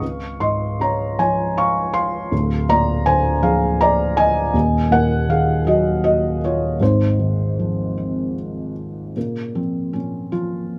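Classical solo piano in a lyrical vein, this short passage from a longer piece carries a wistful, reflective mood at a slow 52 BPM in 6/8, with a freely breathing rubato feel. A felt-muted upright piano plays alone throughout, spanning D1 up to Db6 with a soft, dark, intimate tone that sits up front in the sound. The thick felt gives each note a mellow, muffled edge, and the audible action noise of the instrument adds a close, private character. The harmony moves from Db through Bb7/D, Ebm and Ab6 before the music turns to a new section on Bbm at 9.2 seconds. Light reverb surrounds the piano, keeping the room feel gentle and close.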